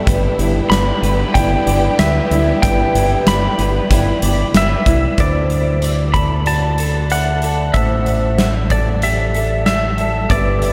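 A steady 94 BPM in straight 4/4 drives this cinematic, melancholic post-rock passage, cut from a longer piece. A huge arena drum kit sits up front with a punchy kick, a medium-tuned snare and hi-hat in a pumping hall, while a growling fingered electric bass, overdriven and close, anchors the low end. An electric guitar through a small old amp plays slightly broken-up, lo-fi arpeggios dressed in lush chorus and diffuse ambient delay, alongside a metallic, ringing vibraphone with fast motor vibrato in the background. From 0.7 seconds a clean lap steel guitar carries the high, twangy slide melody. A focused, bowed string section holds sustained chords behind everything else until 5.1 seconds, then briefly returns near the close, as the harmony moves from G6 to D7 and Am7. The whole mix is soaked in a vast, dreamy reverb.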